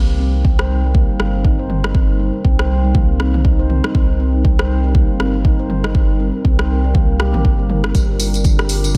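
An up-front, deep electronic kick drum drives this earthy afro house excerpt from 0.4 seconds, with a layered deep house kit of hi-hat, rim click and toms joining at 0.6 seconds over a swung sixteenth-note feel. Beneath it, a round sine sub bass, a moody, detuned sawtooth pad with chorus and slow attack, and a ringing stainless-steel handpan playing meditative arpeggios through a low-pass filter and delay each breathe with sidechain pumping, moving from Cm7 to Gm7. A jingly, vintage acoustic tambourine enters at 8.0 seconds, and the mix sits in a digital ambience.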